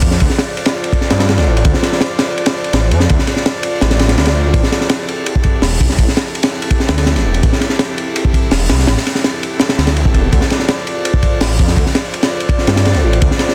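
Nostalgic and atmospheric, this drum and bass cut with a jungle flavor rides on a crunchy breakbeat kit, up front and saturated, with a high-tuned snare, punchy kick and dark, rolled-off cymbals. Beneath it a thick, menacing detuned saw bass holds sustained low notes, while a soft, breathy pad enters at 0.2 seconds with slow-attack chords carrying chorus and vintage 12-bit sampler grit over a Dm7 to Am7 movement. Light reverb and studio ambience frame a dense, heavily limited modern master.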